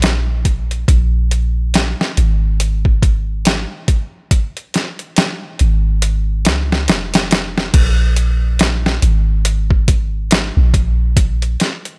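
Trip hop at 70 BPM in 4/4, this short excerpt from a longer piece sets a dark, smoky mood with a swung sixteenth-note feel. A boom bap sampler-style drum kit sits up front, compressed and pitched down, with a gritty character, a thumpy kick, a medium-tuned snare, hi-hat and crash cymbal, all given a touch of studio reverb. Beneath it, a soft 808-style bass, also up front, plays deep, round sine tones with a fast attack that decays, ranging from F1 to Db2 until 11.6 seconds. The kick drops out between 6.0 and 7.7 seconds, just before the music moves into a new section. The overall sound is dry, leaving the drums and bass exposed.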